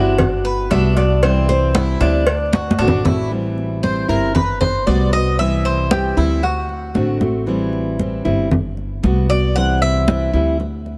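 Latin Cuban son in the guajira vein, this is a sunny, warm-hearted groove at 115 BPM in G major, cut from a longer piece: a classical nylon-string guitar carries the melody until 2.8 s over a fingerpicked steel-string acoustic guitar with audible finger squeak and a woody, thumpy pizzicato upright bass sitting up front. Ringing, close and dry congas and a round, low-tuned cowbell join at 0.2 s, and the cowbell drops out as a drum fill leads into the next section. From 3.3 s the Cuban tres, whose picked, metallic double strings have been arpeggiating from the start, takes a solo over an Am7, Gmaj7, C and D7 cycle, set in light reverb.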